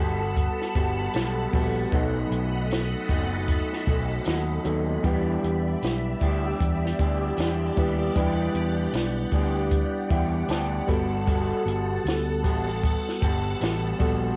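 Indie and bedroom pop with a hazy, nostalgic mood, this swung passage, taken from a longer piece, is carried by a round, punchy fingered electric bass and a dry, compact cocktail drum kit with a high-tuned snare and punchy kick, which enters at 0.4 seconds and sits up front with a cassette-tape tint. A dark, slightly broken-up electric guitar through a small old amp adds picked accompaniment soaked in lush chorus and warbly pitch drift. Meanwhile, a worn, slightly out-of-tune tine electric piano, also colored by cassette tape, plays a fill at 9.7 seconds over the sustained, swirling sawtooth chords of a bright phased string machine, all set in light reverb with a lo-fi home-cassette character.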